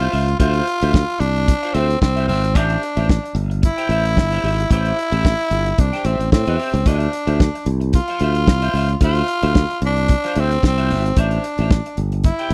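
A swung, sixteenth-note disco groove rides on a damped 70s drum kit, with a fat snare and tight kick up front beside the hi-hat, while a bright, punchy fingered electric bass sits close and direct in the mix. A raspy, gritty tenor saxophone carries the sultry, glamorous melody with light vibrato and slapback echo, and a clean, picked electric guitar with analog chorus stays in the background over chords moving between Dm9 and Am7. The dry, close studio sound and small room ambience give this cut from a longer piece a 1970s feel.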